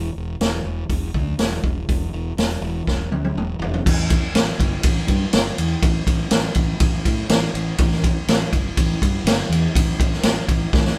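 A vintage acoustic drum kit sits up front with a punchy kick, medium-tuned snare and a rolled-off top, pushing crash, hi-hat, ride and toms through a drum fill from 2.9 to 3.9 seconds that leads into the next section. Beneath it, a dark, round fingered electric bass with overdriven fuzz holds the low end from E1 to A2. The result is a brooding, heavy blues rock power trio and southern rock cut at 122 BPM in a straight 4/4, played live in one room with a moderate studio reverb.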